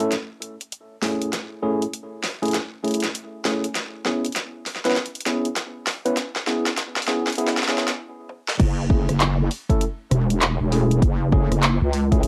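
Lo-fi home-cassette sound in a small room frames this playful, funky, swung glitch hop snippet, where tine electric piano stabs with a clean tone, a low-pass filter, tape echo and sidechain pumping ride Amaj7 and C#m7 over a pop drum kit with a fat snare and bright hats, building through a drum fill and filter sweep to a stop at 8.0 seconds, then dropping at 8.6 seconds onto F#m7 as a heavy, detuned square-and-sine wobble bass with chorus and a punchy electronic kick arrive up front.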